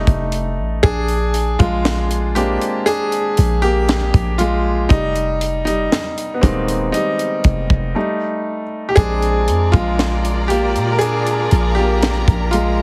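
A clear, natural grand piano leads this dreamy, tender slice of contemporary R&B, soloing up front over a deep, boomy 808-style bass with a fast attack and a tight, dark funk kit of hi-hat, kick and high-tuned snare. After a break at 8.0 seconds, a studio string section enters at 9.0 seconds with bowed, expressive sustained chords full of vibrato and portamento, sitting lower in the mix. The harmony moves through F9, Bb7, Fm11 and Gsus2, and the cut has a heavily compressed radio sound with light reverb and small room ambience.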